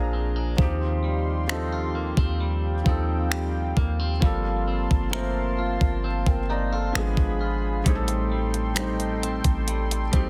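Dense, heavily limited and nearly dry, this longing, late-night contemporary R&B excerpt at 66 BPM layers a mellow felt-muted upright piano with audible action noise, a smooth detuned sawtooth pad with chorus, a twangy clean electric guitar picking arpeggios through delay, and a boomy, up-front 808-style bass, joined at 0.6 s by a gated 80s digital drum machine with finger snaps, hi-hat, a thumpy kick and an overdriven, soft-clipped snare.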